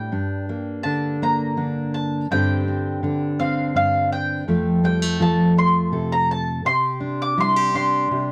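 A mandolin and a fingerpicked steel-string acoustic guitar begin together, the mandolin carrying a mellow, round melody in its upper register while the full-bodied dreadnought guitar supplies accompaniment from low in its range. This stirring, bittersweet indie folk passage in a straight 6/8 moves through Gm, Csus2/G, F and Csus2, both instruments sitting up front in a dry, close recording with a 1970s studio character. Cut from a longer piece that builds its arrangement, this short excerpt lasts about 8.3 seconds.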